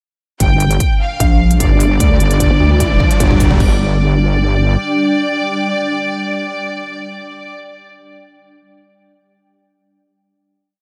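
Aggressive and chaotic, this short heavy wobble dubstep piece at 150 BPM in a half-time 4/4 feel opens at 0.4 s with a bright, intense studio violin section playing a repeating riff on gritty 12-bit sampler tone with ambient delay, over a dark, saturated wobble bass with changing wobble speed, a punchy electronic kick and a crisp dubstep kit of hats and crash, while a pulsing pluck wobble bass answers the other bass, a background riser and a drum fill drive the build to 3.6 s, and a mellow, morphing wavetable pad with sidechain pumping carries a final chord to 7.6 s in a dreamy mix soaked in lush hall reverb.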